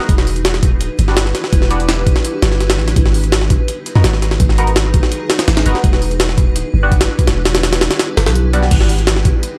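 This dry recording has little reverb. It is a short, dark and atmospheric cut of drum and bass with a jungle feel, landing straight in a drop. Up front, a sampler-style jungle kit of thumpy kick, high-tuned snare, hi-hat and crash sounds compressed, pitched up and gritty, with a tape-warm tone and the body of the large room it was re-recorded in. Beside it, a deep, mellow 808-style bass holds long sine notes that hit with a fast attack and then decay, beneath chords that alternate between Em7 and G#m7. Overhead, a bright, cloudy granular pad of detuned unison voices fades in slowly and evolves in a blurred haze, carrying its own built-in reverb. A nasal, band-passed sawtooth chord stab cuts through with ring modulation, phaser, 12-bit sampler grit and dub echo, falling away at 8.7 s while the pad carries on to 9.6 s.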